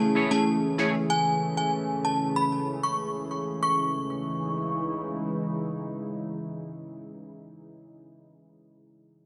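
Lightly reverberant and short, this sultry, tough dancehall fragment in C# minor sits at 95 BPM, moving from Amaj7 to C#madd9 at 3.6 seconds. A deep, dark sawtooth pad with a sub octave and chorus holds sustained chords up front throughout, while a crystalline, detuned wavetable pluck and a twangy, clean electric guitar playing fingered arpeggios appear only briefly near the opening. Carrying the melody until 5.5 seconds is an inharmonic FM chime, mellow and ringing, treated with ensemble chorus, phaser and digital delay.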